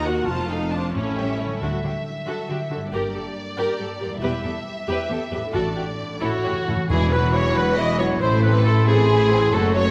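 A heroic, soaring passage of adventure film score in 6/8 opens with a lush bed of strings: a violin section carries the expressive, vibrato-rich melody over a distant second violin line, smooth violas, a focused cello section and dark, woody double basses, while a ringing concert harp plays arpeggios and round, soft-mallet timpani sound close and dry in the background. At 6.2 seconds a bright solo oboe and a mellow French horn section holding sustained chords join, just as the timpani play a fill. At 6.9 seconds the music lifts into a new section where a clear clarinet, a pure, straight-toned flute ensemble and a very quiet tuba fill out the orchestra, all within the reverb of a scoring stage.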